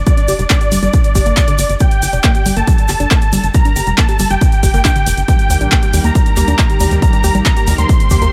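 Uplifting trance at 138 BPM in G minor, euphoric and emotional, this excerpt drives a heavy, tape-warm kick up front beneath a tight sawtooth sequencer bass, huge detuned supersaw chords through a low-pass filter and delay, a punchy unison pluck arpeggio with tape echo under a filter sweep, overdriven analog drum-machine handclaps and hi-hats, a grainy egg shaker in the background, and a thick chorused unison pad entering at 5.3 seconds as the harmony moves from Gm to Eb, with sidechain pumping on the bass, chords, pluck, pad and hats, all set in digital ambience.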